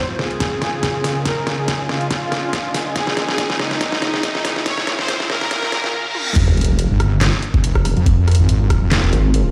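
Heard through a big sound system in a bare room, this excerpt of heavy wobble dubstep carries a large studio reverb and a digital ambience over a half-time, lightly swung groove, with an aggressive, chaotic mood. It opens on a build-up: a smooth, detuned supersaw sings the melody through a phaser, a filter sweep and delay, resting over a morphing, warbling wavetable pad and a very quiet, ethereal airy pad, both sustaining chords and texture throughout. A layered electronic drum kit with a deep, up-front snare, handclaps, hi-hat, rim clicks, toms and crash runs a drum fill beneath, joined by a knocking electronic kick, while a faint riser and reverse cymbal climb toward the break. At 6.4 seconds the drop lands on an impact and sub drop, and two overdriven, chorused wobble basses take the front: one heavy and saturated with a detuned sawtooth edge, the other nasal, dark and resonant, shaped by a vowel-like formant sweep. 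The chords move from D-flat in the build-up to F minor at the drop, where the basses dominate the mix.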